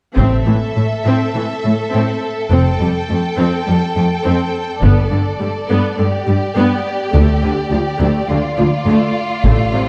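Heavy-stick taiko hits open this heroic, triumphant cinematic orchestral excerpt alongside a bowed string ensemble, with a smooth, vibrato-laden violin melody soaring over a lush second violin line, rich violas, focused cellos and a clear, distant double bass section, while the drums return at 4.8 and 9.4 seconds as the build-up moves through Am, Fadd9, G and Dm in a dark, warm scoring-stage reverb.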